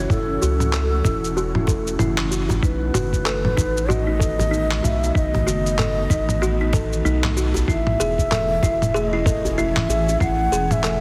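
A heavily compressed, radio-like sound sits in a moderate concert hall reverb for this earthy, hypnotic organic downtempo cut at 95 BPM, swung on the sixteenths and moving from F#m7 through B7 to Amaj7. A breathy, mellow low ney carries the melody with vibrato and tape echo over an ethereal, warbling pad and a round, deep analog bass warmed by tube saturation, both with sidechain pumping, alongside the overdriven, thumpy electronic kick. A buzzing, woody kalimba plays gritty 12-bit arpeggios through a filter sweep and tape echo, while a dusty, overdriven sampler-style kit of handclaps, shaker and toms is later joined by a very quiet, cracking djembe that enters at 0.7 seconds.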